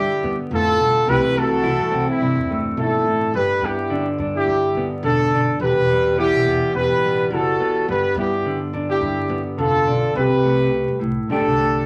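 A clear, tight horn section sits up front and carries the melody with a smooth top, playing in a pop style across the whole 11.9-second stretch of this cut from a longer piece. Beneath it, a dark, clean semi-hollow electric guitar supplies picked accompaniment with a hollow-body character, while a woody, thumpy upright bass on gut strings plays pizzicato as the bass line. The feel is joyful highlife guitar band music at 106 BPM in 4/4, in G major, with a light swing on the sixteenth notes that gives it an easy, buoyant lilt. The harmony moves from G7 through C6, G and Emadd9, returning to G7 before landing on C5 and resting on Gsus2 near the end. A wet club reverb lends the parts a lively room sound, and a layer of vinyl crackle adds a warm, well-worn patina to the recording.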